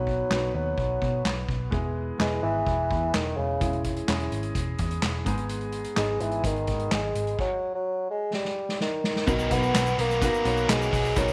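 A roomy, echo-chamber sound frames this bittersweet, dramatic piano-driven pop excerpt at 127 BPM, where a dark bassoon with light vibrato and slapback echo carries the melody over woody upright piano, round foam-muted picked electric bass and a soft-mallet drum kit with dark cymbals and a punchy kick, until a drum fill at 8.3 seconds leads to a biting, double-tracked overdriven guitar riff with spring reverb and a grainy egg shaker entering at 9.3 seconds on a Bmaj7 chord.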